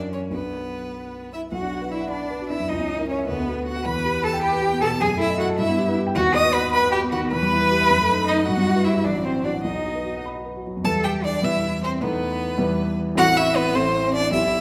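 A clear, smooth violin carries the melody up front, its vibrato singing over a warm cello second line that slides with expressive portamento, while a dark, mellow grand piano, its action noise audible, supplies intimate accompaniment. This urgent, restless classical-period movement for piano trio runs in a quick 6/8 at 103 BPM, shifting from B minor to E minor at 6.2 s. A wet recital hall reverb surrounds the trio in this fragment of a longer piece.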